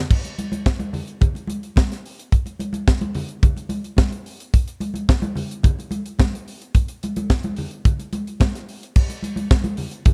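This disco groove is joyful and celebratory, moving at 108 BPM in a straight 4/4 feel. A tight funk drum kit carries the rhythm from 0.1 seconds to the end at 10.1 seconds, placed up front in the mix with a high-tuned snare, a tight kick, hi-hat and crash cymbal. The acoustic kit sounds dry, airy and polished. Congas play alongside it for the whole span, sitting well beneath the drums, with hard hands drawing a ringing, medium-tuned tone and a touch of live room around them. The overall production is dark and warm with little reverb, and a new section begins at 9.0 seconds in this brief cut from a longer piece.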